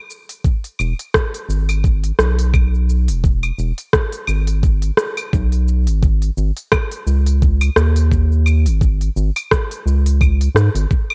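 Sunset chillout at 86 BPM in G# minor, wistful and relaxed, with a gentle 16th-note swing across this short excerpt. A smooth R&B drum kit of cabasa, claves, smooth hi-hat and rim click enters at 0.1 s, joined by a knocking electronic kick at 0.4 s, both tape-warm and up front. A round, deep analog bass with a fast attack and dark sustain comes in at 0.8 s, ranging from E1 to G#2, while the whole mix sits dry under a worn, warbling cassette-tape character with drifting pitch.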